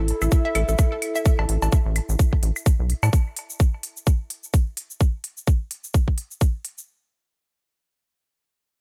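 Cool and sparse, this short cut from a longer minimal techno piece opens at once with a hollow, detuned square pluck riff, a rubbery, dark square bass with tube saturation, and a warbling, nostalgic pad with chorus and built-in reverb, all three pumping against the sidechain. Clicky, overdriven hi-hat and shaker enter at 0.1 s, analog claves and cowbell treated with delay follow at 0.2 s, and a tight, up-front electronic kick drum arrives at 0.3 s. The bass carries on until 3.1 s while the pluck and pad drop out early, all set in a bright 1980s-style digital production with light reverb.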